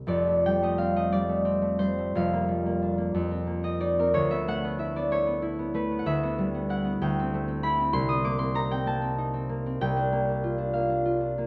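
A solo concert harp opens this gentle, mysterious classical fragment, its thumb-plucked strings ringing up front with a warm, detailed closeness and a touch of light reverb. Moving freely in 6/8 at roughly 54-65 BPM (dotted quarters) and tuned to A4 = 438 Hz, it spans from F1 up to Eb6 while the harmony drifts from F6/9 through Gm7/F, D6/9 and Am7/D before settling on Bbadd9/C near 9.8 seconds. The passage is cut from a longer piece and lasts about 11.5 seconds.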